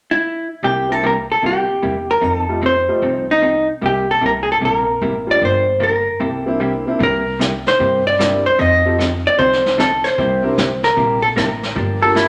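Playful and swinging, this short western swing excerpt in C mixolydian at 151 BPM features a dark, clean hollow-body electric guitar carrying the melody over a second hollow-body guitar, a worn, slightly detuned upright piano and a growly pizzicato upright bass, with a brushed drum kit entering at 7.0 seconds and a bright, twangy pedal steel guitar arriving just at 12.0 seconds, all set in a wet studio reverb.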